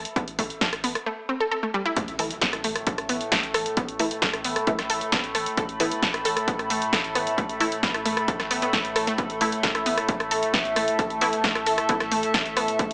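A straight 4/4 pulse at 133 BPM drives this relentless, industrial stretch of peak-time techno, cut from a longer piece, with a punchy, layered electronic kick and an up-front analog drum machine of hi-hat, rim click and snare all running from the opening moments. A warbling, lo-fi pad with a nostalgic, mellow haze sits over a deep, saturated sub bass held in the background, both sucked into sidechain pumping, while a round, detuned analog pluck riff trails dub echo through the mix. At 2.0 s the drop arrives with a very quiet electronic impact, and just after, a nasal, evolving analog drone with pulse-width modulation enters along with a muted, wave-folded dub chord stab that carries a phaser and digital delay. The stabs drop out at 11.9 s as the rest of the groove continues to the end. A moderate plate reverb and a small-speaker character give the whole recording a compact feel.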